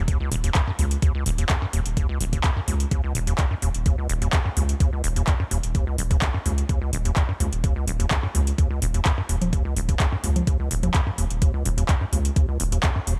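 A straight 4/4 pulse at 127 BPM drives this raw, hypnotic acid house cut from a longer piece, built on a thumpy, sampler-style electronic kick sitting up front and a booming analog drum machine whose overdriven congas, handclaps and metallic hi-hats sound re-recorded in a small room. In Eb phrygian, a squelchy, hollow square-wave acid bass riff with a resonant filter pluck runs from the start, roughened by overdrive and tape echo, while a deep, thick saturated sine sub bass pumps underneath with sidechain movement. The mix stays dry and close, with little reverb across the roughly 13 seconds.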